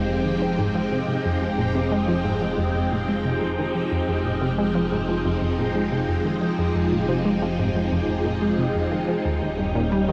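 A bright, swirling phased string machine sits up front with slow-attack sawtooth chords, thickened by ensemble chorus and phaser, in this cosmic, expansive piece of sequencer-driven space music in F minor at 90 BPM. A round, detuned analog pluck carries the riff with chorus and delay from 0.1 s, a filter sweep runs across the synth arpeggio, and a fat, thick sawtooth bass anchors the low end beneath a resonant, bubbling texture of random filter steps. The harmony rests on Fm7 before moving to Eb7 at 9.3 s, all bathed in a huge, wet reverb and the worn, warbling pitch drift of old cassette tape in this brief cut from a longer work.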